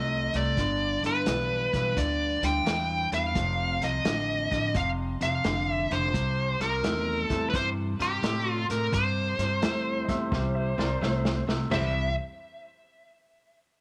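A laid-back, gritty electric blues shuffle at 86 BPM in C major opens with an overdriven, dark lead guitar carrying the melody up front. Beneath it, a bright, twangy riff comes from a slightly broken-up electric guitar through a small old amp, and a pizzicato upright bass with steel strings adds a woody tone with tube saturation. A lo-fi vintage kit joins at 0.3 s, muffled and small-roomed, with a tight kick, a medium-tuned snare and a rolled-off top. At 1.3 s a mellow, intimate, boxy upright piano settles into the background, with audible action noise and long sustain. At 10.0 s a second, slightly detuned piano adds a higher line with short sustain, and from 10.3 s the drums play a fill over the C chord. The mix is dry, and the recording is cut from a longer piece.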